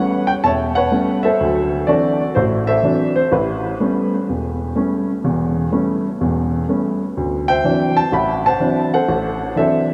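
Awash in a huge, dreamy reverb, this short fragment of a longer piece places a natural, up-front baby grand piano inside a cavernous, ambient space, its tone trailed by a diffuse delay. Playing solo jazz in a relaxed, swinging 4/4, the piano ranges from deep bass notes up into the upper register, moving between A9 and D9 chords for a laid-back, floating feel.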